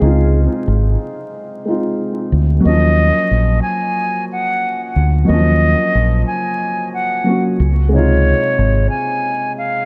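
Vinyl crackle and a small, echo-heavy room frame this gritty, moody boom-bap hip-hop excerpt at 91 BPM in Eb dorian, where a woody, slightly detuned upright piano filtered through dub echo and a round, deep dub fingered electric bass carry a swung groove over Dbmaj7 until a breathy, close-miked silver concert flute, also filtered and echoed, enters at 2.7 s on Ebm9 with an expressive, tongued straight-tone melody.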